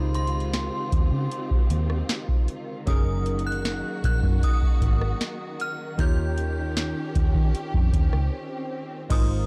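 A booming analog drum machine sits up front with a deep kick, crisp snare and metallic hats, alongside a round, foam-muted fingered electric bass, while a chiming, inharmonic FM synth carries the melody high above with ensemble chorus, tremolo and delay. This tender, dreamy slice of contemporary R&B moves at 77 BPM over Dbmaj9#11, Gb6 and Eb7 chords, with detuned, wave-folded analog keys under chorus and a distant, lush bowed string section holding sustained chords with vibrato and portamento. Near the end, an electronic swell rises in the background from 7.7 s as the groove breaks at 8.3 s, all set in a dark digital ambience.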